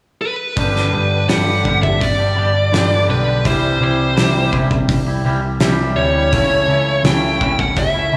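A dark, high-gain lead guitar with distortion and slapback echo carries the melody from 0.2 s in this anthemic, bittersweet quiet-loud alternative rock excerpt at 83 BPM in 4/4, joined at 0.6 s by clean, twangy fingered arpeggios on electric guitar that share the slapback echo, a growly overdriven picked bass and a loose indie drum kit with a fat snare and punchy kick, moving from G to C to A/C# inside a concert-hall reverb that gives a big arena sound.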